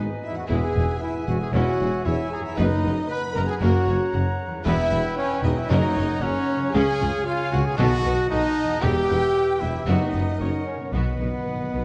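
In straight 4/4 at 115 BPM, this heroic adventure film cue in B major has a soaring, heroic character, cut from a longer piece and running just under 12 seconds. A lush, expressive violin section carries the melody from a distant place in the background, while a second violin line joins at 0.2 s alongside airy flute, a mellow solo cor anglais and a close-miked clarinet, all tucked behind the main body of sound. Mellow, roomy French horns hold sustained chords and a soft-attacked trumpet adds stabs. Very quiet violas and a ringing, fingerpicked harp fill the middle with accompaniment and arpeggios. The low end is heavy, built from woody bowed double basses, a focused cello section and a distant tuba, and timpani struck with hard mallets enter at 2.6 s before a fill from 10.9 s as the harmony lands on B. A moderate scoring-stage reverb and a dark production give the whole a broad, cinematic weight.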